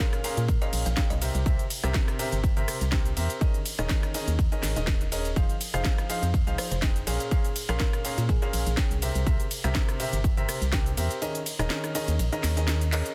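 A bittersweet, soulful piano house excerpt opens with a clear, smooth concert grand piano riff carrying deep bass and short sustain, treated with delay and sidechain pumping. Beneath it sits a punchy, up-front electronic kick and a crisp house kit of cracking snare, hi-hat, ride cymbal, rim click, handclaps and cabasa, both in a small room. A buzzing, woody kalimba with a thumbnail pluck adds brief delayed melody in the background, returning at 6.6 seconds. An organ-like FM bass, hollow and dark with a fast attack and decaying tone, pumps under the riff as the chords move through Bbm7, C7, Eb7sus4 and Fm7. The kick falls away after 10.8 seconds, leaving the piano, bass and kit until a drum fill at 12.9 seconds, all under light reverb in a dense, heavily limited modern master.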